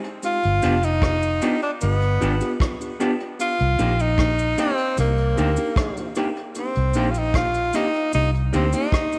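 The recording has light studio reverb, and tape echo colours the drums, saxophone and electric piano. This is a lovers rock reggae piece at 76 BPM in 4/4 with a straight feel, in C minor, and its mood is bittersweet and smooth. A bright, close-miked tenor saxophone carries the pop-style melody up front with vibrato, while a dark, round, foam-muted fingered electric bass sits just as forward from 0.5 seconds. A soft brush drum kit with a tight kick, hi-hat and rim click plays in a natural studio room, joined by a cabasa in the background. A twangy, slightly broken-up electric guitar through a small old amp adds lo-fi stabs from the start, and a mellow tine electric piano, clean and heard through its built-in speakers, supplies accompaniment. The harmony moves from G7 to Cm7 at 3.4 seconds in this short passage cut from a longer piece.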